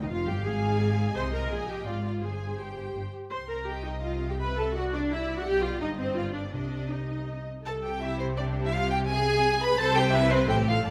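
A moderate recital-hall reverb surrounds this lively, spirited excerpt from a quick classical-period movement for string orchestra, in 3/4 at 159-174 BPM with a rubato feel, moving from C minor to C major at 7.7 s. A rich, smooth first violin section carries the melody with light vibrato, over a distant, intense second violin line and a focused, up-front viola accompaniment. Expressive cellos and close, clear double basses hold the bass, the basses joining at 0.1 s.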